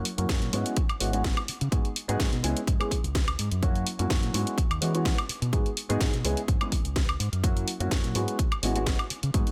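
A punchy, tape-warm electronic kick sits up front in this groovy, funky filtered disco house excerpt alongside a layered house kit of hi-hat, cracking snare and woodblock whose hats and percussion pump against the sidechain. A dark, mellow concert grand piano with deep bass comps through F#7, E69 and G#m7 to C#m7 chords under phaser, pumping and a low-pass filter, while a round, dub-style fingered electric bass pumps beneath it through its own low-pass filter. A filter sweep runs through the whole 9.5 seconds, and a digital ambience surrounds the mix.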